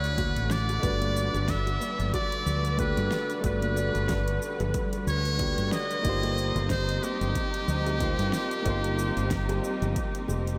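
Sunset chillout at 92 BPM with a swung sixteenth feel, warm and sunny, cut from a longer piece and bathed in a huge, dreamy reverb. A buzzy, metal-muted trumpet carries the jazz-style melody up front with light vibrato and sampler grit, over a dark grand piano with analog delay, soft-edged bowed strings in the background, a very quiet ringing harp playing arpeggios and a round, punchy fretless bass. An overdriven deep house kit with fat snare, metallic hats and cabasa plays from the start and is joined by a punchy electronic kick and faint congas and bongos from 0.2 seconds, as the chords move from Dmaj7 to Gmaj7 and then Eb6/G at 6.0 seconds.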